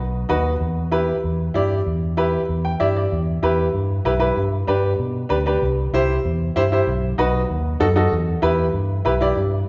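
Passionate and fiery, this short cut from a longer cumbia piece drives along at 192 BPM in a straight 4/4, set in E minor. A fingered electric bass sits up front with a bright, growly, amped tone, running from the very start to 9.6 seconds in a low register. An upright piano supplies the accompaniment in the middle range, its sound clear, woody and intimate, with short sustain and audible action noise close to the ear. The piano plays a brief fill from 2.5 to 3.1 seconds, leading out of the opening section into a second passage that moves through G, C and B7 before settling back on E minor. The whole recording sits in a wet recital-hall reverb, with a rounded top end that gives it the feel of a church or concert hall.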